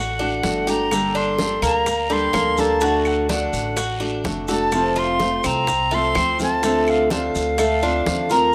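A straight 4/4 pulse at 126 BPM drives this sultry, danceable slice of Cuban son and guajira, cut from a longer piece. Percussion sits in the background: tight, high-tuned bongos and soft-handed congas with a thick skin enter at 0.2 seconds alongside grainy maracas, followed by a raspy guiro and, from 0.9 seconds, dry, woody claves. From 0.0 seconds, an airy silver concert flute carries the melody with vibrato and a soft attack, while a Cuban tres picks arpeggios on metallic double strings and a pizzicato upright bass adds a dark, thumpy low end on gut strings. Up front, a flamenco guitar with fresh strings supplies fingerpicked accompaniment in a warm tone. The harmony moves from D through Gmadd9 and back to D, then to F and Dm7, all in a rough home demo mix with light reverb and small room ambience.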